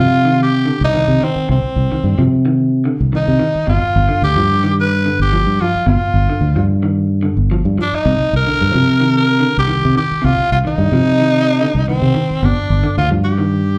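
A raspy tenor saxophone leads this afrobeat excerpt, its gritty, punchy solo voice carrying a pop-style melody with vibrato, up front and edged with slapback echo. The groove sits at 110 BPM in a straight 4/4 in C minor, and the mood is hypnotic and defiant. Underneath, a fingered electric bass gives a dark, round, amped foundation that sits prominently in the mix. An electric guitar through a small old amp picks arpeggios in a slightly broken-up tone, also touched with slapback echo. The harmony moves from Cmadd9 to G7(omit3) at 3.7 seconds, then to Cm9 and G7, all heard as a live gig through the venue's PA with light club reverb, and the clip is cut from a longer piece.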